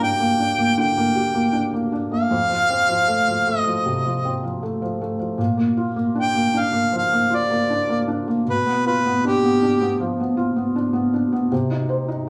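A warm harmonica and a felt-muted upright piano open this tender, heartfelt acoustic folk-pop ballad together in a passage cut from a longer piece. The harmonica carries the melody up front in a classical style, with light vibrato, a soft attack and a smooth top. The piano accompanies in a mellow, intimate voice with short sustain, thin felt and audible action noise, moving through Gm, F, Bb and G7/B to Cm, and it plays on alone after the harmonica stops at 10.0 s. The band plays live in one small room, whose ambience and a wet studio reverb lend the close, natural sound a gentle halo.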